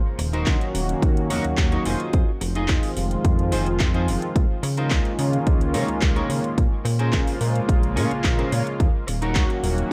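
Sunny and feel-good, this nu-disco excerpt at 108 BPM in a straight 4/4 rides a punchy, up-front electronic kick and a house kit with metallic hats and handclaps under a glossy, mellow chorused synth bass with sidechain pumping, a smooth, warbling analog pad with chorus and tape echo, and a bright, clean semi-hollow guitar riff with chorus and echo that adds a fill from 7.7 to 8.8 seconds, all moving through Ebm7, Fm7, Db69 and Bbm9 in a dry mix.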